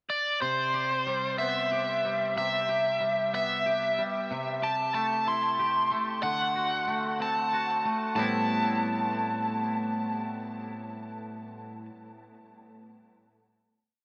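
Cinematic and brooding, this short post-rock piece moves at a slow 62 BPM in a straight 6/8, set in A dorian and tuned slightly sharp of standard pitch. A biting, bright lead guitar opens almost at once at 0.1 seconds, playing an overdriven, motif-based melody of arching phrases with delay trailing each note. A twangy, clean electric guitar joins at 0.4 seconds with picked arpeggios through analog chorus and delay, and both guitars sit up front in the mix. The harmony moves from Cmaj7 through Am7/C and D7 before settling on a lingering Am9 at 8.2 seconds that carries the piece to its close. A huge ambient reverb with a long tail soaks the whole mix, giving it a dreamy, suspended atmosphere.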